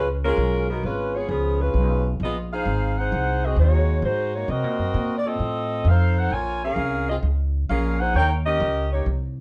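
Swinging and energetic, this big band swing passage is cut from a longer piece and pairs a tight, mellow saxophone section carrying the melody with light vibrato against a woody, thumpy pizzicato upright bass, both up front from the start. The saxes drop out at 9.1 seconds, leaving the bass to sound on briefly until 9.4 seconds, over changes that move from Db7 through Ab7, Cm7b5, F7 and Bbm7 to Eb7. The band plays live in one room with moderate studio reverb and a soft, rounded top end.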